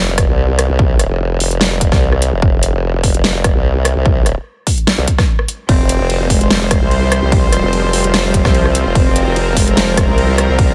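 Heavy and aggressive, this half-time wobble dubstep excerpt in F minor at 147 BPM opens on an up-front, chorused and overdriven formant-sweep wobble bass over an F5 chord, joined at 0.2 seconds by a punchy, tape-warm electronic kick and a layered kit of huge snare, metallic hats, ride and rim clicks, before a dark, intimate bowed cello with vibrato and delay and a lush, detuned unison pad with chorus and sidechain pumping enter together at 5.7 seconds in a dry mix.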